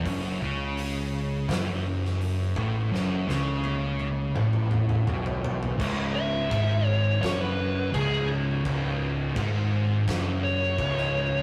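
Brooding and heavy, this short stoner and doom metal excerpt in C# minor crawls at 84 BPM in a straight 4/4, as an up-front thick fuzz guitar riff leads a very quiet second fuzz guitar and a very quiet, double-tracked sludgy overdriven guitar over a bright, growling picked bass and an oversized low-tuned acoustic drum kit with a fat snare and boomy kick, whose fill runs from 2.9 to 5.8 seconds before a dark, compressed fuzz lead guitar with wah takes a solo from 5.8 seconds, all captured in a rough rehearsal-room recording with saturation and moderate reverb.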